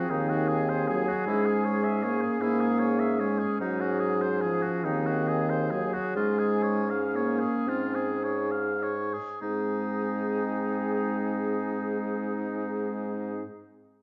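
Heard in a wet recital hall with a softened, dulled top end, this fragment of a slow romantic wind-quintet movement in a rubato 6/8 has a warm, tender mood. An airy, straight-toned silver flute carries the melody from the background while an oboe with light vibrato sings the second line, and an up-front, close-miked horn and a warm background clarinet fill in the accompaniment above a mellow, vintage-toned bassoon bass that enters at 0.1 s. The music gradually slows from 2.4 s before moving into a new section at 9.4 s.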